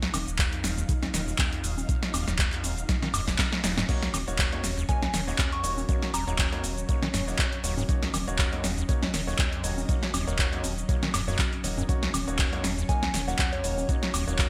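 Acid house at 120 BPM in Eb minor with a light 16th-note swing, this hypnotic, driving excerpt rests on an Ebm7 chord, with a lush, vintage string machine holding sustained chords in the background while a squelchy, resonant square-wave acid bass riff with overdrive and delay pumps against a round, deep analog bass and a tape-warm electronic kick. A punchy, up-front drum machine adds congas, shaker, woodblock, hi-hat, handclaps, snare and crash with gated reverb, and a drum fill at 2.9 seconds leads into clear, intimate grand piano stabs with audible action noise from 3.9 seconds. A soft, pure FM bell melody with chorus and delay appears briefly from 4.9 seconds and again near the end, all set in a light digital ambience with a bright 1980s-style sheen.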